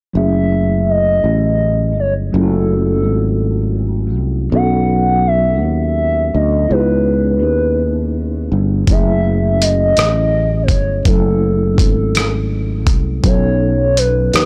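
A mellow tine electric piano opens this slow, late-night R&B excerpt in 6/8 at 55 BPM, laying down F#m9, B9 and C#m9 chords, joined almost at once by a growly, up-front fretless bass and a smooth, gliding lead with chorus, vibrato and analog delay. At 8.9 s a dusty, sampler-style soul kit of hi-hat, thumpy kick and rim click comes in, overdriven and compressed, sounding re-recorded in a small room. The sultry mood sits in digital ambience on a dry, gritty hardware recording.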